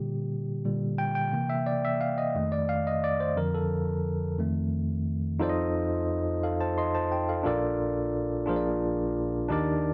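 In a straight 6/8 at 59 BPM, this jubilant, uplifting gospel fragment in Bb major features a clean, up-front tine electric piano heard through built-in speakers, spanning Bb1 to C6 and playing alone across its roughly 10 seconds, moving through chords from Bb6 to F7 before settling on Bbmaj7 and Bb7 near the close, all framed by light reverb and digital ambience in a dark, warm production.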